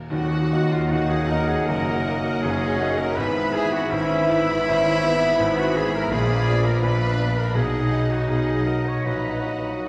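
A classical, romantic movement for piano and orchestra unfolds in Eb minor at a rubato-inflected 80 BPM, its tragic, brooding mood carried by a clear, intimate grand piano up front whose melody spans from deep in the bass to the upper register, with its action noise audible. Muted symphonic violins share the melody in a veiled, lush con sordino line, while a distant, very quiet studio violin section, a metallic, airy flute, a clear oboe and a clear clarinet trace second lines around it. Beneath them, a dark bassoon and rich, muted violas provide accompaniment, a dark French horn section holds sustained chords, and muted cellos and double basses anchor the bass. A mellow, roomy trumpet adds stabs from the background from 0.5 seconds, and a dark tam-tam sounds softly until 3.1 seconds, reinforcing an ensemble accent at the opening. The harmony moves from Ebm through E/G# and a tense Bb7b9 to B6 before settling on Ebm/Bb, all heard from further back in a wet scoring-stage reverb in this passage cut from a longer piece.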